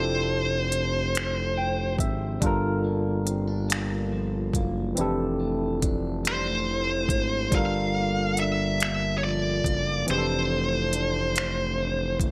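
A sultry, late-night mood hangs over this slow six-eight R&B excerpt, cut from a longer piece and shaped by bright 1980s-style digital production with light reverb. A barky tine electric piano, lightly overdriven through a combo amp with subtle chorus, carries the harmony throughout, moving between Fmaj13 and Gm7 and adding a fill from 1.1 to 2.4 seconds. Beneath it, a smooth gliding synth bass of sawtooth and triangle tones, wave-folded and sustained with vibrato and portamento, holds the low end. A produced electronic drum kit enters at 0.7 seconds, up front, with finger snaps, smooth hats and a knocking, tape-warm kick bathed in gated reverb. A dark, high-gain lead guitar sits forward in the mix, stating the melody at the opening and returning at 6.3 seconds, while a slightly broken-up electric guitar with lush chorus supplies a picked, compressed second line in the background from 2.4 seconds onward.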